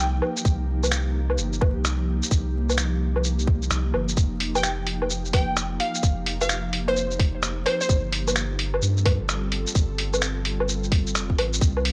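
A short, rainy, nocturnal stretch of future garage at 129 BPM opens with a glassy wavetable pluck, an ethereal airy pad and a soft dub sub bass sounding together. The pluck flickers for only half a second, and during that flicker the lo-fi sampler-style kit of finger snaps, hi-hat, shaker and woodblock enters at 0.2 seconds, muffled, pitched down and compressed, with a tight electronic kick arriving at 0.5 seconds and sitting up front with the most weight. Underneath, the deep, round sub bass and the slow-blooming pad, detuned and thickened by ensemble chorus and its own reverb, both breathe with sidechain pumping over a swung 16th-note groove. The crystalline pluck returns from 4.6 to 7.9 seconds with a bright, chorused tone, analog delay and a filter sweep, tracing a line between C5 and G5. The harmony moves from Cm7 to F9sus4 and then G9sus4, and the whole mix carries a dry, gritty hardware character with vinyl crackle and a light digital ambience.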